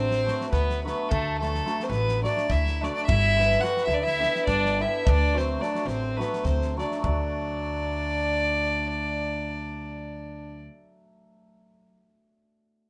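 Exuberant and virtuosic, this Balkan wedding-band excerpt in 7/8 sets a dark, reedy, gut-string fiddle melody up front over a distant, nasal, metallic stopped French horn second line, shimmering hammered dulcimer chords, woody pizzicato upright bass and a small-room acoustic drum kit of tight kick and medium-tuned snare that drops out at 7.3 seconds; once the fiddle, horn and bass stop near 10.7 seconds, the dulcimer rings on alone until 11.9 seconds in light reverb.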